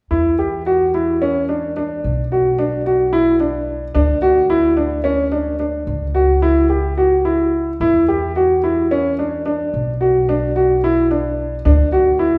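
An intimate, boxy grand piano with audible action noise and short sustain sits up front playing arpeggios, while a woody pizzicato upright bass with steel strings holds the low end beneath it in this urgent, restless contemporary chamber piece in 7/8 at 219 BPM in eighths, set in E dorian with tuning at A4 = 444 Hz, moving through chords like E7(no3), Bm and C#madd11 inside the lingering reverb of a concert hall in a passage cut from a longer work.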